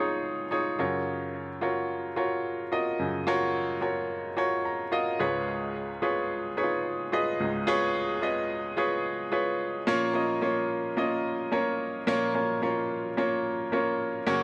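A clear, woody upright piano plays alone from the start, setting a warm, anthemic pop mood at 109 BPM in a straight 4/4, its tape echo and light reverb framing a polished, up-front sound across a span from low bass notes to bright upper register. Moving through C#add9, F#maj7 and C#7, the piano adds a short fill at 4.4 s before the passage shifts to a new section on A#m at 9.9 s. This is a brief cut from a longer piece.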